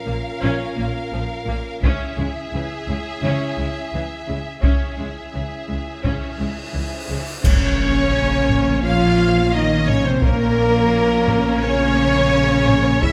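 A heroic, epic orchestral film score excerpt opens with a rich, lush violin section carrying the melody over a warm second violin line, mellow French horn chords, a smooth viola accompaniment and a bass of dark, woody cellos and distant double basses. Hard-stick taiko drums, close and acoustic, join at 1.8 s, while bright clash cymbals and concert bass drum and a huge cymbal swell with a sub drop build to a full-band accent and impact at 7.4 s. From there a pure, warm concert flute adds a second line in the background, all set in a moderate scoring-stage reverb.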